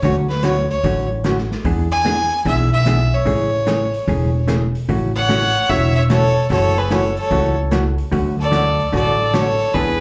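A swung 4/4 groove carries this cheerful, down-home stretch of western swing country, captured live through a club's PA with the room's reverb around it. A biting, nasal fiddle with light vibrato sits up front on the melody, while a dark, clean hollow-body jazz guitar plays picked, compressed accompaniment through plate reverb and slapback echo, and a woody, thumpy pizzicato upright bass and a small-room vintage drum kit with a punchy kick and rolled-off top hold down the bottom. At 5.2 seconds a second bowed fiddle, earthy and clear, adds a softer line bathed in plate reverb as the chords move through lush seventh and sixth colours.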